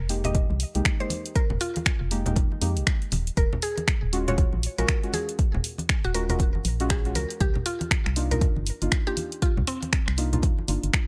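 A hollow, organ-like FM bass opens this short deep house passage, with dark, decaying notes at the very start that set a warm, late-night mood over a swung 4/4 groove. Almost at once a deep, mellow chord stab arrives, soft and warbling with a vintage, tape-worn character, its chorus, tape echo and sidechain pumping giving it a breathing sway through Fm11, Ebm11 and Cm11 voicings. The drum kit brings finger snaps and hi-hat, while low-tuned congas played with soft hands add a thick-skinned, close and dry acoustic layer. A woody, round mallet-like synth pluck carries the melody with a bright edge, dressed in chorus and delay, and the deep electronic kick sits up front from 0.3 seconds, the loudest part of the mix. The room is nearly dry, leaving the parts close and intimate, and the fragment ends at 11.1 seconds as it is cut from a longer piece.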